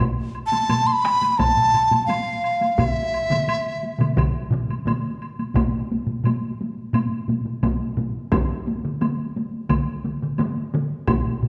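A mellow, airy large dizi with a buzzing membrane, vibrato and crisp attack sings up front from 0.5 seconds in this powerful, driving Japanese traditional taiko excerpt in straight 4/4, where hard-stick taiko layers pound beneath it: some compressed and saturated, one close, and one vintage, band-limited and up front, with two joining at 1.4 and 2.8 seconds beside a soft, woody woodblock in a recital hall's reverb.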